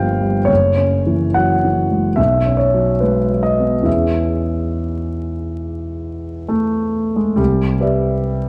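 Luminous and dreamy, this short excerpt from a longer piece is impressionist classical solo piano in E major, moving with rubato freedom around 66-76 BPM. An intimate concert grand sits up front, its deep bass and long sustain ringing through a moderate recital hall reverb, with audible action noise and vinyl crackle adding texture. Open suspended harmonies drift toward an E6 chord, then shift to a Cmaj9 at 7.4 seconds just before the clip ends.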